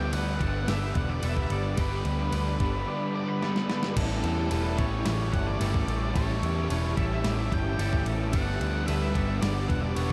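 A round, punchy electric bass sits up front, picked and foam-muted through an amp, anchoring this blissful, wistful shoegaze and dream pop excerpt at 110 BPM in a straight 4/4, in A mixolydian. Over it, a dark octave-fuzz lead guitar carries the melody through diffuse ambient delay. Behind them, a bright crunchy overdriven guitar with reverse reverb, a very quiet double-tracked crunchy guitar, and a lo-fi garage guitar with overdrive and analog chorus play riffs, while a scooped, twangy clean guitar picks arpeggios with subtle chorus and delay. A deep, moody, warbling sawtooth pad with a sub octave and slow attack holds sustained chords in the background. A sampler-style 12-bit drum machine with a thumpy kick, medium-tuned snare, crash and ride comes in at 0.1 s and plays a fill from 3.4 to 4.0 s, as the harmony moves from G to A7 at 4.0 s and then to Gmaj7 at 8.3 s. The whole mix is soaked in a huge, dreamy ambient reverb with an 8.0 s tail.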